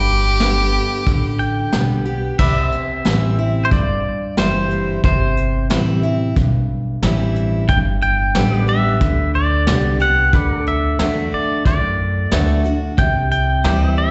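Heard through a live venue's PA with recital-hall reverb and a dulled top end, this easygoing, down-home honky-tonk country excerpt opens with a focused, lightly vibrato bowed fiddle melody that stops at 1.7 s. It plays over a full-bodied picked dreadnought acoustic guitar with finger squeak, a woody, thumpy pizzicato upright bass, a brushed vintage drum kit with dark cymbals, and up-front sustained pedal steel chords. A twangy pedal steel line with volume swells and slapback echo enters in the background at 1.4 s and takes a solo from 2.4 s to the end.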